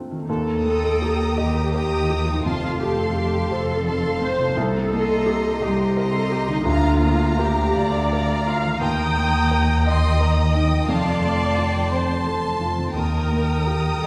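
A felt-muted upright piano, soft and intimate with audible action noise, opens alongside a very quiet, bright, ringing harp playing arpeggios, before rich bowed viola and double bass sections enter at 0.3 s with a lush cello section in the background, and at 0.6 s a distant, focused violin section carries the melody over a smooth, close second violin line, all in a slow, rubato 6/8 at 57 BPM in Eb lydian, moving from Eb through F, Cm7 and Bb/D in an uplifting, emotional cinematic cue bathed in a wet scoring-stage reverb and heard from further back in the room.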